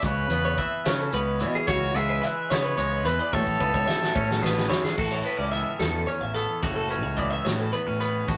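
Intricate and playful, this short cut from a longer math rock and midwest emo piece moves in a lilting 6/8 with a straight feel. A clear, punchy trumpet with light vibrato carries the melody in a vintage pop style, then drops out at 4.7 seconds. Beneath it, a bright, scooped electric guitar picks out the accompaniment while a compressed twelve-string electric guitar ripples through chiming arpeggios. A round, up-front fingered bass with fuzz overdrive anchors the low end, and a loose indie drum kit with a punchy kick, medium-tuned snare and rolled-off top plays a fill from 3.3 seconds into the shift at 5.0 seconds. The harmony moves from C#m7 to Aadd9 and settles on A69, all captured in a rough rehearsal-room recording with moderate reverb and a gritty, saturated edge to the drums.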